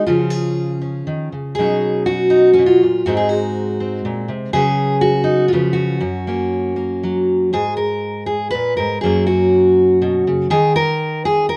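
Hopeful and nostalgic, this short folk passage features a single fingerpicked steel-string acoustic guitar playing alone throughout. The playing moves in a gentle three-beat metre with a loose, rubato feel, giving the phrasing an unhurried, spoken quality. The guitar's full-bodied jumbo tone sits up front, spanning a range from deep bass notes to the middle register, and a light reverb adds a touch of space around it. The opening passage drifts through chords such as Badd9, G#7 and a C#7sus4 resolving to C#7 before settling on F#. A second passage begins at 7.5 s with a G#madd9 that returns to F#, and the harmony falls away at 10.5 s as the fragment breaks off from the longer piece.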